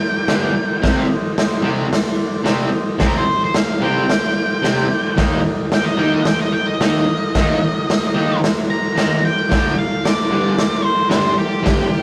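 Garage rock with a menacing, gritty edge, this short cut from a longer piece moves at 111 BPM in a straight 4/4, its chords passing from Gm through Cm and Eb back to Gm. A bright, double-tracked fuzz guitar picks a distorted riff up front beside a punchy, acoustic drum kit with a medium-tuned snare and rolled-off top, while a dark octave-fuzz lead guitar carries the melody through tape echo and a very quiet, reedy combo organ holds sustained chords with light vibrato. The rough rehearsal-room sound carries light reverb and warm saturation.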